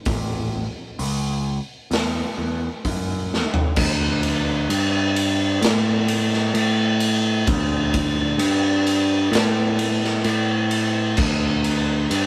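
Hypnotic and sludgy, this stoner and doom metal excerpt, cut from a longer piece, moves at a slow, straight, heavy crawl in 4/4. A growling picked electric bass, overdriven, bright and direct from the amp, sits up front in a low register. Beside it, a raw garage drum kit sounds acoustic, gritty and saturated, with a punchy kick, a medium-tuned snare, a rolled-off top and a pumping stone-room ambience, while crash, ride, hi-hat and toms fill out the kit. A drum fill at 3.3 seconds leads into a new section at 3.8 seconds that carries through to the end. The whole take has the rough feel of a rehearsal-room recording, with a touch of light reverb.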